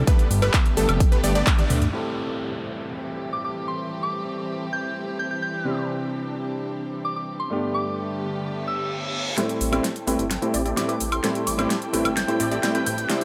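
This euphoric festival progressive house excerpt opens mid-drop, with dark, bowed strings holding sustained chords under a detuned supersaw stab riff, a background pluck arpeggio, a fat, saturated analog bass and overdriven drums built on a punchy up-front kick, huge snare and metallic hats, all but the drums and kick pumping to the sidechain. At 1.9 seconds the drop gives way to a warm grand piano accompaniment with tape echo, while a soft, pure FM bell melody with chorus enters at 3.3 seconds and background downlifters and risers drift through. A reverse cymbal leads into the build-up at 9.4 seconds, where the drums, bass and supersaw return and filter sweeps move across the supersaw and strings alongside a drum fill.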